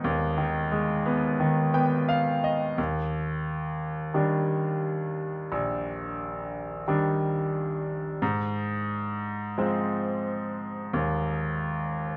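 A bright grand piano plays alone throughout this short folk excerpt, sitting up front with a brilliant, natural tone under light reverb. The mood is heartfelt and tender, moving at an unhurried 88 BPM in a straight 4/4 feel, centred on E-flat major. The piano spans a broad register from Bb1 up to G5, giving the solo both depth and sparkle. The harmony opens on Abm, settles onto Ebmaj7 at 2.8 seconds, and shifts to Ab6 at 8.2 seconds. Cut from a longer piece, the passage lasts just over 12 seconds and repeats its opening idea after a brief first statement.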